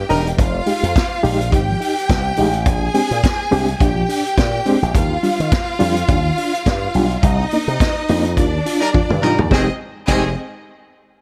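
A bright, punchy slap bass with an envelope filter drives this glamorous, sultry disco excerpt at 105 BPM in F dorian, swinging its 16ths over a vintage drum kit with dark cymbals and a rolled-off top that throws in a fill from 8.9 to 9.5 seconds. A reedy electric piano with fast tremolo carries the chords from Fm9 through Bb13, Ebmaj9, Cm7 and Ebmaj7, while a lush, close violin section with expressive vibrato adds a second line. A distant, roomy horn section stabs at the start and returns at 8.8 seconds, all set in light reverb and small room ambience.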